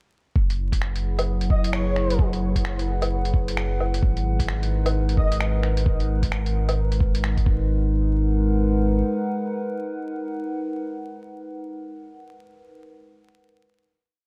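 A warbly, tape-like pad carries this short future garage piece, its mellow, wave-folded chords shifting slowly under chorus and their own reverb while sidechain pumping makes them breathe, from 0.4 seconds until the final chord fades at 12.1 seconds. Beneath it, a deep, round sine sub bass holds the root notes up front, pumping along with the pad. A muffled, thumpy two-step kick and a skittering, shuffled kit of finger snaps, closed hi-hat and low woodblock carry the groove, both sampler-style, compressed and roughened with vintage 12-bit grit. Twice, a soft, breathy flute-like synth lead slips in with short phrases, touched with vibrato, ensemble chorus and a diffuse ambient delay, the first beginning at 1.5 seconds. The beat drops away after about 7.7 seconds, leaving a lingering last chord in a dreamy mix soaked in plate reverb and vinyl crackle, ghostly and melancholic in mood.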